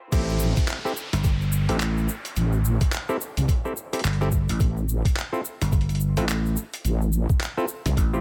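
Glitch hop at 107 BPM in A minor, this short drop swaggers with a playful, swung 16th-note feel over a move from Am7 to Gsus2 at 4.6 seconds. A heavy, saturated wobble bass sits up front, its detuned sawtooth-and-sine unison sound dark and resonant with chorus thickening its sustained low notes. An electronic kick, thumpy and pitched down with tape grit, anchors a boom bap sampler-style kit whose medium-tuned snare, handclaps, hi-hat and crash carry a compressed, gritty, tape-warm character in studio reverb. From 1.1 seconds a growly, amped vintage slap bass punches in alongside, while a mellow, stringy clav played through a combo amp adds quieter stabs treated with sidechain pumping and dub echo. A grainy egg shaker sits close in the mix, and an electronic downlifter runs underneath until 4.6 seconds, all within a dry, high-pass-filtered production.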